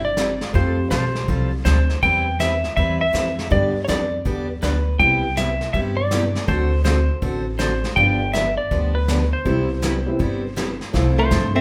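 A live band in one large studio room, with moderate reverb, plays a swinging, playful western swing excerpt at 162 BPM in C major, cut from a longer piece. Up front, a clean, compressed lap steel carries the melody with slide and volume swells over a growly, woody upright bass, while a mellow, dark upright piano and a bright, jumbo steel-string acoustic guitar with finger squeak fill out the accompaniment. A vintage brush kit with a rolled-off top comes in at 0.2 seconds, and a hollow-body archtop guitar adds a brief second line from 11.2 seconds, after the chords have moved from Cmaj7 to Fmaj7.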